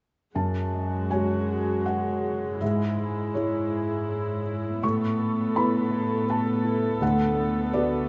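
Cinematic, emotional film scoring for orchestra, this brief fragment of a longer piece feels moving and bittersweet, unfolding with a rubato 3/4 lilt around 81 BPM in F# minor over chords moving from F#madd9 through C#m/G# and Aadd9 to D6. Up front, a felt-muted upright piano gives soft, mellow, intimate accompaniment, alongside a dark viola section bowed sul tasto with light vibrato and a gentle attack. A very quiet, rich cello section floats underneath as the bass, while a thumb-plucked concert harp rings out arpeggios from the background, all held in a moderate scoring-stage reverb with a rounded, subdued top end.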